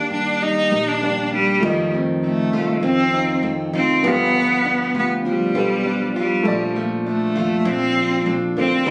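Pop at 99 BPM in a straight 4/4, this heartfelt yet carefree excerpt in F mixolydian sets a clear, smooth bowed cello with vibrato up front on the melody, over a dark, mellow upright piano and a full-bodied fingerpicked steel-string acoustic guitar sitting in the background. A bright nylon-string guitar adds fingerpicked classical arpeggios with audible finger squeak, while a woody, thumpy pizzicato upright bass on gut strings enters at 0.1 seconds. Captured on a phone in the room with light studio reverb and compression, the harmony moves from Ebmaj7 into F7 at 1.6 seconds, then through G7 to Bbmaj7.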